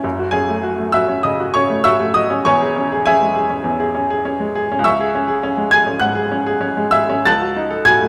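A romantic classical character piece for solo piano, this brief fragment cut from a longer work carries a brooding, passionate mood. A bright upright piano plays alone throughout its 8.1 seconds, its brilliant, woody tone sitting up front with a natural, short sustain. The playing moves in 4/4 with a flexible rubato feel, spanning from deep bass notes at E1 up to A6. The harmony drifts from F#m through C#m/E and C#m before arriving at D#m7b5/C# at 7.3 seconds. Close, detailed microphones capture the instrument, framed by a moderate recital hall reverb that lends it a sense of space.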